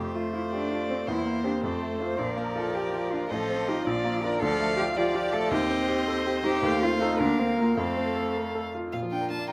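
A piano quintet opens together in F major: a violin carries the melody between C5 and A5, a cello sings a second line, a baby grand piano plays accompaniment, and a viola fills in the middle. A second violin joins at 0.5 s with its own second line. This quick classical-period movement moves at 108 BPM in dotted quarters in 6/8 with a straight, lively and graceful feel, and the harmony turns toward Bb major from 4.4 s. The lead violin sounds clear and smooth with vibrato, while the cello is rich and focused and the viola is intense. The second violin has an even tone with a smooth top, and the piano is natural and up front with short sustain, reaching down to A1. Close, detailed microphones and light reverb give an intimate sound to this short passage cut from a longer piece.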